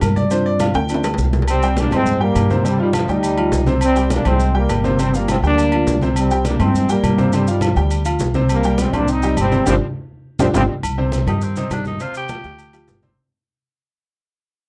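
Salsa with a danceable, driving push, this clip cut from a longer piece opens with a clear, natural baby grand piano featured over the first 1.5 seconds, its short-sustain chords carrying on as accompaniment throughout, while a drum fill arrives at 0.8 seconds. A woody, dark upright bass sits up front with pizzicato steel strings, joined by ringing agogo bells and timbales that sound close and dry, soft-handed low-tuned congas set distant in the background, and grainy, mellow maracas low in the mix. At 1.5 seconds a bright, tight trombone section takes the melody up front, its smooth top and light vibrato touched by a slapback echo, moving over a harmony that alternates G7sus4 and C5 before settling toward Cm7. A second drum fill and a band accent arrive together near the end of the horn line, and as the music fades out from 10.8 seconds a raspy, gritty tenor saxophone steps in with a brief vintage solo at 11.3 seconds. 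The dry, close sound has the feel of a 1970s studio session with only a light reverb.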